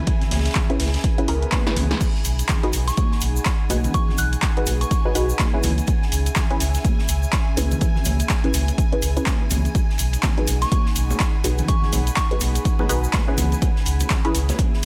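Deep house with a warm, late-night swing, built on a punchy up-front electronic kick, a deep sine sub bass with octave and a punchy, tape-warm analog drum machine of crash, handclaps, hi-hat and snare, with ringing high-tuned congas, a grainy tube shaker and a very quiet, airy jazz kit of dark ride and snare behind them, while muted, detuned dub chord stabs with phaser and delay pump over a breathy pad and a silky string machine, a very quiet electronic swell and drum fill lead up to the 2-second mark, and a pure FM bell melody appears twice in this excerpt.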